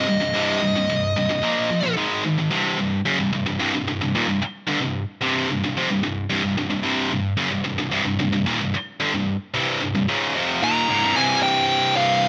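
Relentless and heavy, this short metal fragment cut from a longer piece drives ahead at 111 BPM in a straight 4/4, set in C phrygian. A heavy high-gain guitar carries the riff for the full 12.3 seconds, its bright, picked, double-tracked tone sitting up front in the mix and ranging low into the bass register. A dark, distorted lead guitar states a short melody in the opening 1.9 seconds, then returns at 10.6 seconds to close out the fragment. The harmony moves from C minor through Bb and Ab power chords before settling on a C power chord. The sound is dry, with little reverb, and carries the rough, unpolished character of a home demo.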